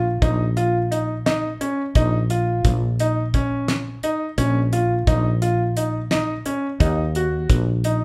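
A woody, growly fretless bass anchors this short cut from a longer progressive instrumental, its round, hollow-body tone sitting up front in the lowest register and giving the music a driving, tense pull. A clear grand piano plays arpeggios in a narrow middle range, its intimate sound close enough to reveal the noise of its action. At 0.2 s a damped 70s drum kit joins on hi-hat, kick and snare, dry and close, with a fat snare and a tight kick. The band moves in 7/8 with a straight feel and holds a single minor chord with an added eleventh throughout the passage. The players sound as if they are performing live together in one room, with a moderate large-studio reverb around them.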